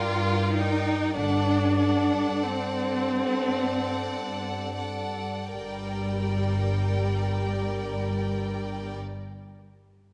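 Elegiac and solemn, this slow romantic movement for string orchestra unfolds in G minor at 35-50 BPM in a rubato 3/4, cut from a longer piece. The first violins carry the melody between F#5 and G5 with a focused, vibrato-rich tone, while the second violins trace a second line beneath them, played sul tasto with a soft attack and an intimate, close quality. Violas sit up front with a smooth-topped accompaniment, and the cellos hold a low, even G underneath. The double basses join at 1.2 s, deepening the foundation just as the harmony shifts from G minor to D7 over a G pedal. The tempo slows through the opening until 5.5 s, when the music returns to G minor, all of it set in a moderate concert hall reverb.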